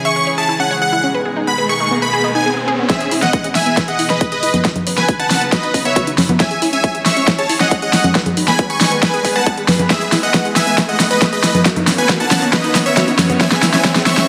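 Euphoric and soaring, this uplifting trance passage at 137 BPM in C# minor opens with huge, detuned supersaw chords carrying the melody up front, a round analog pluck spinning arpeggios through chorus and dub echo, and pure, floating strings sustaining chords in the background, all three pumping under sidechain as a very quiet riser enters at 0.7 seconds. At 2.9 seconds an overdriven big-room kit with a huge snare, hi-hat, shaker and congas arrives alongside a punchy electronic kick, launching a build-up with a drum fill and a filter sweep on the pluck arpeggio over a C#m, G#m, E, Badd9 cycle. A lush hall reverb frames the mix, and the clip is cut from a longer piece.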